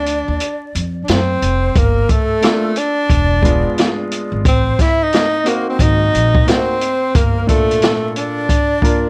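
Vinyl crackle and light reverb frame this cool, smoky jazz-hop excerpt from a longer hip hop piece, where a mellow, breathy tenor saxophone carries the melody up front with light vibrato and scooped notes, a hollow metal flute with soft attack and lifted highs adds a second line, both horns bathed in plate reverb and the flute also in analog delay, a woody, dark pizzicato upright bass plays until 7.4 seconds, an open small-room jazz kit with a boomy kick and rolled-off top swings along with its kick muted from 0.4 to 1.8 seconds, and a long-sustaining upright piano enters at 2.4 seconds over chords such as Gm9, E7b9 and Ab9.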